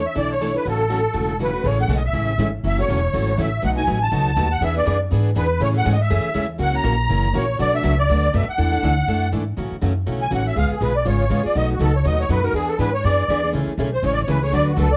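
Charming and swinging, this excerpt of acoustic string swing in the jazz manouche style races along at 242 BPM in A major, with a reedy, shimmering musette accordion carrying the melody up front over a woody, thumpy pizzicato upright bass on gut strings. Two picked steel-string acoustic guitars accompany, one plugged-in with a warm tone and the other bright with fresh strings sitting in the background, both showing finger squeak. The accordion takes a solo from 9.6 s to the end, and the whole recording carries a small-room reverb along with the worn, warbling pitch drift of old cassette tape and vinyl crackle.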